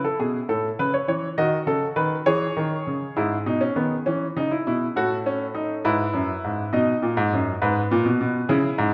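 Stately and joyful, this short excerpt cut from a longer piece is a baroque-style three-part fugue for solo baby grand piano in a straight 6/8 at 68 BPM, moving from C# minor to E major at 3.2 s. The piano sounds natural and up front, with short sustain across a range from F#2 to D#5, set in a wet recital hall reverb. Its chords travel from A and D#dim through C#m and E/G# to F#m/A, E, B and finally G#m, with the piano playing alone from 0.0 to 8.9 s.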